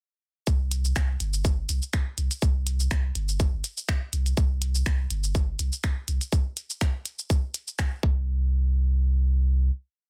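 A tight, overdriven four-on-the-floor kick drives this sparse, cool minimal techno piece at 123 BPM in 4/4 with a light 16th-note swing. A programmed kit of clicky closed hi-hats, shaker and backbeat finger snaps sits lower in the mix, re-recorded in a small room like the kick. A deep, punchy sine sub bass with a pitch-drop attack and sidechain pumping plays a syncopated riff up front, sounding alone after the drums stop at about 8.1 seconds and ringing into the final hit until 9.7 seconds, all within a dry, dense, heavily limited master.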